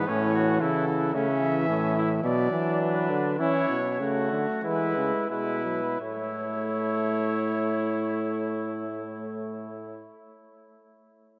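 In a straight 4/4 pulse that slows down through the first 6.0 seconds, this brief passage cut from a longer piece presents a classical imitative canzona for brass ensemble, elegant and joyful in mood. A dark trumpet with light vibrato and a smooth top carries the melody, while a clear flugelhorn, vintage in character and sitting up front, adds a second line beneath it. A mellow trombone with soft attack and light vibrato supplies the accompaniment, and a clear euphonium, also up front with a soft attack, holds down the bass. All four parts play together from the start until 10.1 seconds, moving through a simple progression from A to B minor, back to A, then E before settling on A as the second section begins at 6.0 seconds. A wet cathedral reverb places the ensemble in a vast, echoing space, letting each chord ring long after it is played.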